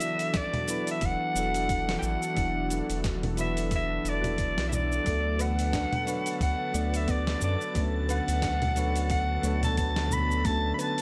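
Sunset chillout in B minor at 89 BPM with a lightly swung 16th-note feel, smooth and warm in mood, this short cut from a longer piece sets a growling, raspy soprano saxophone up front on the jazz-style melody, scooping into notes with vibrato through a digital delay, over soft electric-piano-like synth keys with chorus and delay and an airy, breathy pad in the background. A dusty soul sampler-style kit of congas, hi-hat, shaker and medium-tuned snare, re-recorded in a large room, runs throughout, joined at 0.3 seconds by a thumpy electronic kick and at 1.0 seconds by a round, deep analog bass. The harmony moves from E9sus4 to Bm7/D at 5.1 seconds, where shimmering steel pan arpeggios enter behind the saxophone, and a wind-like tuned noise texture follows at 6.1 seconds in a light digital ambience.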